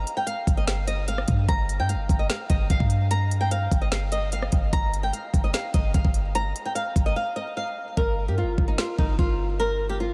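Trap hip hop in G minor at 148 BPM with a half-time feel, this eerie, brooding excerpt sets a bright, fingerpicked flamenco guitar melody, up front with audible finger squeak and colored by analog chorus and delay, over a deep, boomy 808-style sine bass and an up-front electronic kit of knocking kick, woody snare, rim click and crisp hi-hats, all in light reverb, with a break at 7.2 seconds before the harmony shifts to a G minor seventh chord at 8.0 seconds, where the hi-hats drop out.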